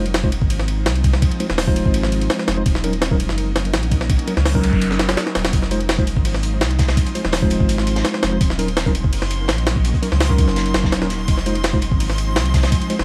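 Drum and bass in a jungle vein, this short cut from a longer piece moves at 167 BPM in 4/4 with a straight feel, sitting in F phrygian and carrying a raw, nostalgic mood over a bed of vinyl crackle and a dry sound. A sampler-style jungle kit sits up front, compressed and pitched up, with a thumpy kick, a high-tuned snare, hi-hat and ride, all carrying a gritty, tape-toned edge. Beneath it a soft, round dub sub bass holds the low end, while a mellow tine electric piano plays stabs through dub echo and an ethereal pad in the background sustains detuned, chorused chords with reverb and vintage 12-bit sampler grit, the harmony swinging between Fm7 and Ebm7. A very quiet electronic noise sweep sounds from 4.6 seconds and leads into 5.5 seconds, where a second, crunchy breakbeat kit joins in the background, a saturated studio-room snare and hi-hat with a rolled-off top and high-pass filtering. 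From 6.2 seconds a reversed, swelling granular texture hangs high at C6, adding a dreamy, bright shimmer with its own reverb.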